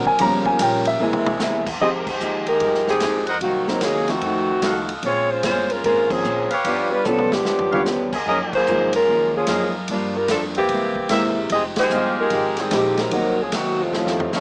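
A swung 4/4 pulse at 148 BPM drives this dramatic big band swing excerpt in F minor, cut from a longer piece. The drum kit has an airy, polished hall sound with a punchy kick and several fills, while a dark, woody upright bass plays pizzicato on thumpy gut strings. Beneath the band sit a warm grand piano and a clean, picked hollow-body electric guitar in the background. The piano opens with a short solo over a brief, close-miked saxophone chord. At 1.8 seconds a mellow, smooth-topped saxophone section steps up front with a tight melody over rich chords such as Fm9 and Gbmaj13. A trumpet section with light vibrato adds stabs from 3.3 seconds amid band accents, and a bright trombone section slips in at 13.8 seconds with a second line in the background, all framed by light reverb and a small-speaker sound.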